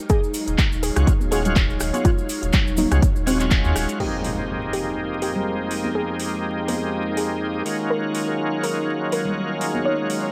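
A swung 4/4 deep house groove opens with a punchy, up-front electronic kick and a house kit of metallic hats, handclaps, rim clicks and crash, with a grainy cabasa in the background. A deep sine-like sub bass with octave joins at 0.5 seconds, and bright, high-tuned congas follow in the background at 1.2. The kick drops out at 3.6 seconds and the bass at 3.9, just before an electronic impact at 4.0 marks the move from Ebm11 to Fm11. From the start, a silky string machine, a warbling, nostalgic tape-like pad and a soft, round delayed pluck melody play, and from 1.0 seconds a bright, shouting tonewheel organ with key click and slow rotary adds pumping stabs over them, all under a veil of vinyl crackle for a smooth, moody feel.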